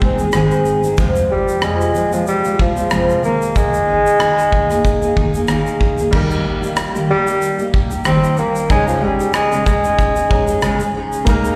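A gently swung sixteenth-note feel at 93 BPM in 4/4 gives this carefree, heartfelt acoustic pop passage, cut from a longer piece, an easy lilt. A loose indie drum kit, punchy in the kick and set up front in a small, pumping room, mixes crash cymbal, rim click and shaker. A double-tracked, fingerpicked steel-string jumbo guitar carries the harmony with a full-bodied tone, moving from Ab through Fm and Ebsus4 to Eb and Dbsus2. Above it, a warm bassoon sings the melody in a classical style, heard distant and roomy yet up front, until it drops out at 10.9 seconds. At 6.1 seconds a soft, felt-muted upright piano slips in at the back, mellow and intimate with its action noise audible, and like the guitar and bassoon it carries plate reverb and slapback echo. The whole passage sounds like a live gig heard through the venue's PA, wrapped in moderate club reverb and a recital-hall ambience.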